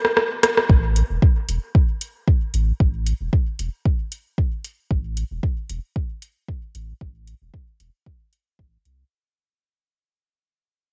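Nocturnal and hypnotic, this dub techno fragment from a longer piece opens with a short fill on a soft vintage rhythm box, whose metallic hi-hats and rim clicks carry a cassette-tape grain, before a deep, layered electronic kick and a smooth, dark sine sub bass with sidechain pumping arrive at 0.7 seconds, all three parts sitting up front in light reverb on a home cassette recording with a gently swung 16th-note feel, fading out through to 9.1 seconds.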